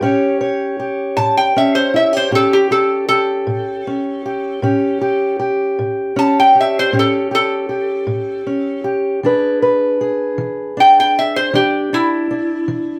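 A metallic, nasal lap resonator guitar, played with a steel bar and fingerpicks, takes the slide melody from 1.2 s in this soulful, gritty acoustic country blues excerpt. A boxy parlour steel-string guitar is fingerpicked underneath in a slow 12/8 at 52 BPM in A mixolydian, moving from A7 to E7 at 9.2 s. Both guitars sit up front in a wet studio reverb, with the players heard live in one room over a faint mains hum.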